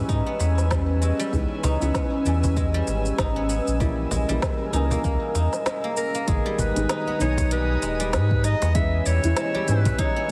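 Mystical and meditative, this organic downtempo piece at 97 BPM in G# harmonic minor pairs a mellow felt-muted upright piano with tape echo, an airy pad with chorus and sampler grit, and silvery guzheng arpeggios over a round sub bass that pumps against a deep electronic kick, a drum kit with woody snare, crisp hi-hat and cabasa, and a snappy cajon in the background, while a breathy clarinet with light vibrato and delay joins them at 6.0 s to take the melody, the mix set in a small room with a heavily compressed radio sound.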